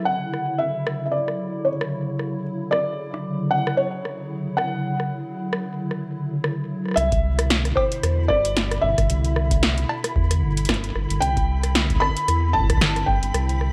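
A felt-muted upright piano, dark and intimate with 12-bit sampler grit and tape echo, carries a wistful melody over a hollow, flute-like pad with ensemble chorus and sidechain pumping in C lydian, joined at 0.3 s by an electro analog drum machine of punchy snare, metallic hats, cowbell and rim click at a swung 113 BPM, before a round, detuned analog bass and a deep electronic kick arrive at 7.0 s and 7.1 s, with a grainy, flickering granular texture drifting in the background as the chords move from Dmaj9 to Cmaj9 in this intricate IDM excerpt.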